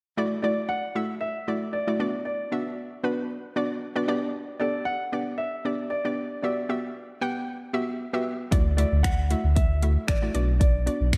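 A lush hall reverb and a big arena sound frame this carefree, euphoric dance-pop clip, cut from a longer piece. A hollow, bouncy square-wave pluck opens the accompaniment at 0.2 seconds, its detuned, chorused tone sitting up front with a slapback echo. A dark, mellow baby grand piano joins at 0.4 seconds to carry a short-sustained melody through delay and slapback. The chords move from Dadd9 through Bm and G to Emadd9, then return to Dadd9 and Bm. At 8.5 seconds a deep, full sub bass with an octave arrives, pumping with sidechain, together with a punchy, layered house drum kit of kick, metallic hi-hat and finger snaps. That entrance turns the mellow opening into a dance groove in a straight 4/4 feel.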